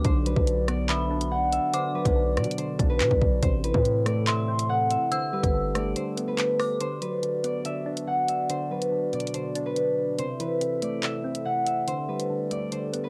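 A fingerpicked concert harp carries the melody up front in this ominous, tense drill cut, its acoustic tone ringing through a cassette-tape haze. It sits over a half-time 142 BPM groove in 4/4 and B phrygian, cycling through Bm, Am and Gadd9. Round, mellow electric-piano-like synth keys with chorus supply the accompaniment, while a glassy glass harmonica holds ethereal, slow-blooming chords in the background. A dark, detuned FM synth bell adds an eerie, inharmonic second line with chorus, phaser and analog delay before dropping out at 6.8 seconds. The electronic drill kit hits hard with a clipped kick, bright hats, handclaps and rim clicks. A punchy, heavy 808-style bass with a noise layer booms up front until 5.9 seconds, and the kick falls silent from 6.0 seconds until the second section begins, all in a small, moderately reverberant home-cassette room.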